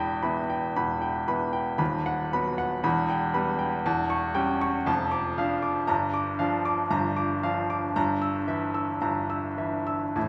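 A clear, intimate baby grand piano sits up front with audible action noise, its natural tone framed by a moderate scoring-stage reverb. This brief fragment of a romantic character piece for solo piano unfolds in 4/4 at around 100-121 BPM with a rubato feel, its brooding, stormy mood carried through harmonies that move from E minor toward darker chords such as A7 over E, G minor seventh and a diminished chord near 8.0 seconds. The piano spans a broad range from D#1 in the bass up to E6 across the full 10.3 seconds.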